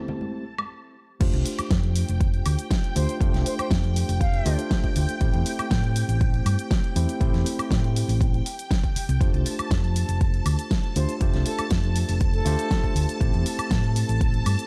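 A dark, round hollow-body electric bass anchors this groovy, feel-good nu-disco cut at 120 BPM in F major, pumping under a punchy up-front electronic kick that drops in at 1.2 seconds to join a pop kit, already playing from 0.6 seconds, with fat snare, hi-hat, cabasa, woodblock and crash, while a worn, slightly out-of-tune tine electric piano with tape echo and a lush phased string machine hold Am7 and F69 chords, brief ringing congas open, and an airy, reedy flute with vibrato and analog delay slips in twice, all on a dry, gritty cassette-tape recording.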